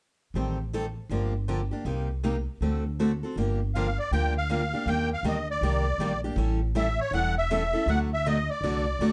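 Virtuosic and bittersweet, this gypsy-jazz excerpt in G minor swings at 160 BPM as a growly, woody pizzicato upright bass and a bright, freshly strung picked steel-string guitar set out the changes from the start, before a reedy, shimmering musette accordion enters with the melody at 3.7 seconds, all in a dark production with light reverb.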